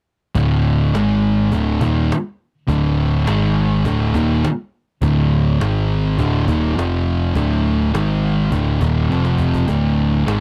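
Two thick, dark fuzz guitars sit up front with a sludgy, brooding riff built on power chords around D, G# and F, underpinned by a growly, punchy overdriven bass and backed by a woody, softly played cajon with faint snares that adds a short fill at 9.1 seconds, all captured in a dry, close 1970s-style studio sound in this stoner and doom metal excerpt.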